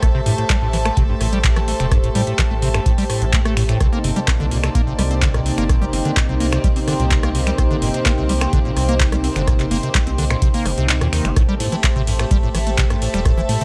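Acid house at 127 BPM in a hypnotic, trippy groove, where a squelchy, resonant square-wave acid bass riff with tube saturation, subtle chorus and analog delay rides over a round, dark analog bass and a smooth, warbling vintage pad, with the bass and pad pumping under sidechain alongside a floating, bowed string section, while a dry, deep electronic kick and a booming analog drum machine of finger snaps, handclaps, metallic hi-hats, ride cymbal and rim clicks drive the beat through Am7 and Cm7 chords, the kick dropping out briefly from 10.9 to 11.4 seconds.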